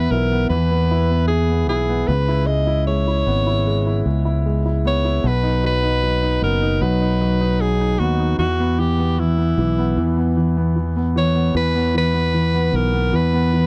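A heartfelt, emotional pop ballad moves at an unhurried, straight pace in this short excerpt cut from a longer piece. A bright alto saxophone carries the melody throughout, its present, up-front pop tone colored by a light vibrato. Beneath it, a clear grand piano plays the accompaniment with an intimate, natural sound, long sustain and audible action noise. A fingered electric bass sits low and punchy, its round, dark, amped tone placed up front. The harmony travels from E5 through C#m7 and B before returning to E5, all captured in a dry, close studio sound with a 1970s character and little reverb.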